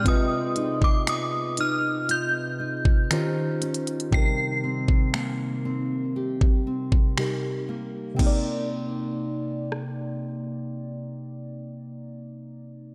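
A chiming, inharmonic FM synth melody rings out high at the start, sitting up front with ensemble chorus, tremolo and a diffuse ambient delay that give it a warbling, vintage shimmer. Beneath it, muted felt-like synth keys play soft, intimate accompaniment with a dark, ring-modulated edge and a filter sweep. A fingerpicked nylon-string guitar adds classical-style arpeggios with its own ambient delay. This fragment of contemporary R&B moves at a slow 59 BPM in 4/4 and C minor, its mood longing and sensual. A trap kit sits up front with a knocking kick, crisp hi-hats, finger snaps, rim clicks and crash cymbal, all roughened by 12-bit sampler grit. The chords pass from G7b9b13/C through Eb13 to Cm7, then settle on Cm9 once the chime has stopped at 7.1 s. The drums drop out at 10.0 s, leaving the keys and guitar to ring on in a dreamy mix soaked in plate reverb.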